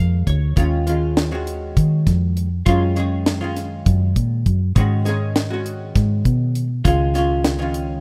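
A round, up-front hollow-body short-scale fingered bass anchors the low end of this brooding, intricate progressive instrumental clip in 7/8 at 201 BPM (eighths), alongside a double-tracked, compressed, clean archtop guitar that opens with a brief fill before accompanying the C#add9, D#m7, F#maj7 and G#m7 changes, while a dry, dark reggae drum kit with a high-tuned snare and tight kick enters at 0.3 s, captured in a rough home demo mix with little reverb.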